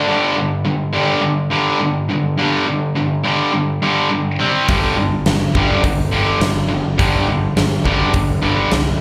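Hard rock at 104 BPM in a straight 4/4, menacing and heavy, caught live through a club PA with light room reverb in this short cut from a longer piece. Two bright distorted guitars open together, one overdriven and up front, the other tight and distortion-edged, both riffing with slapback echo over G5 and C5 power chords. At 4.7 seconds a huge arena drum kit with a fat snare and punchy kick lands alongside a growly, direct picked bass.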